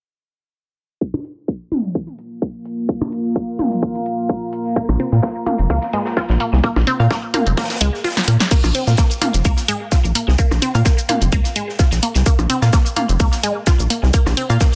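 Minimal techno at 128 BPM in 4/4 with a light swing on the sixteenths, this clinical, hypnotic cut from a longer piece opens at 1.0 seconds with a tight, layered electronic kick up front, joined by digitally delayed percussion blips and toms and a punchy analog drum machine carrying cabasa, crash, hi-hat and snare re-recorded in a large room. A deep, moody ambient pad with chorus and built-in reverb breathes under sidechain pumping from 2.3 to 8.5 seconds while a filter sweep runs through the opening section, the kick dropping out briefly before a drum fill leads into the second half. Around 4.8 seconds a juicy, squelchy resonant blip pluck arrives with phaser and delay, alongside a rubbery, hollow square bass sitting up front with sidechain pumping. Crisp, detuned wavetable chord stabs with delay hover in the background, as does an open acoustic jazz kit whose high-passed hats and medium-tuned snare add a faint studio-room layer. 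The dense, heavily limited master carries light digital ambience and a low-pass filter, keeping the groove tight and trance-like.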